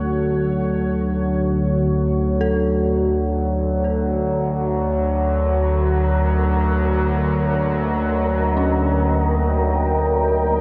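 In free time, this cavernous, desolate stretch of dark ambient drone, cut from a longer piece, rests on an up-front analog drone built from detuned, wave-folded sawtooth and pulse waves with chorus, while a deep, moody pad fades in across the whole 10.6 seconds, its sub octave and ring modulation adding weight. Set in the background, an eerie, inharmonic FM synth bell plays arpeggios through chorus and analog delay, fading out across the clip as the harmony moves from D to Eb/D at 4.8 seconds. From 5.5 seconds, an airy, breathy wind-like noise texture tuned to Bb4 joins, and the whole mix is soaked in a lush hall reverb for a dreamy sound.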